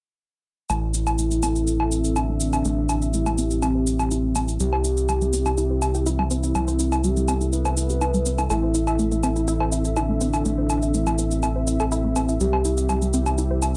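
Light reverb and a digital ambience surround this excerpt. It is a melancholic yet driving melodic techno passage at 123 BPM in 4/4 with a straight feel, set in A minor and tuned to A4 = 438 Hz, with everything entering together at 0.7 seconds. A gritty, nasal synth bass sits up front with aggressive distortion and sawtooth bite, while a shaker and woodblock add a tape-warm, analog pulse with a small-room character. A soft, round octave-layered lead carries the melody with a sub-octave body, vibrato and phaser and delay shimmer, over a deep, moody analog pad that holds sustained chords with a slow attack. Tucked in the background, a tight, detuned sequenced synth plays plucky arpeggios shaped by a filter sweep and trailed by delay, and the lead, pad and arpeggios all share a chorus sheen. The harmony moves simply between Am and C, and the excerpt is cut from a longer piece, ending around 13.8 seconds.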